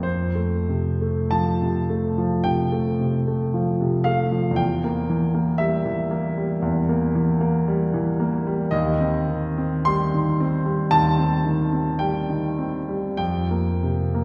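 A concert grand piano carries this serene, dreamy romantic nocturne alone, its smooth, vintage tone reaching from a deep bass up into the high treble. The playing moves with a gentle rubato in a slow four, drifting from F through Edim and Cm/Eb before settling on Fsus4 at 13.2 seconds. A wet concert hall reverb places the listener further back in the room, giving the 14-second excerpt a distant glow.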